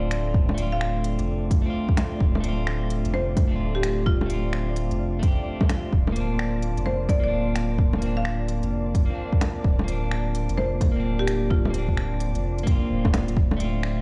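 Heard through a big, bare-room studio reverb, this rainy, wistful future garage fragment swings over an up-front deep electronic kick and a tape-warm kit of bongos, finger snaps and smooth hi-hats, while a round sine sub bass, a dark detuned analog pad with chorus and a slightly broken-up electric guitar with 12-bit sampler grit and analog delay all pump to the sidechain, and a bright, woody hard-mallet marimba carries the melody from 0.7 to 11.9 seconds alongside a very quiet flickering, grainy texture.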